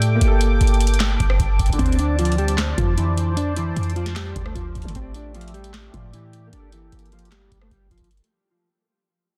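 A booming analog drum machine with a deep kick, crisp snare, metallic hats, handclaps and rim clicks drives this eerie, hard-hitting half-time trap excerpt in D minor at 152 BPM, joined by an up-front, clean, boomy 808-style bass, a warm concert grand piano, a sweeping resonant pad with chorus, and a mellow, fingered electric guitar melody with analog chorus that enters at 1.8 seconds, all set in digital ambience under a dense, heavily limited modern master.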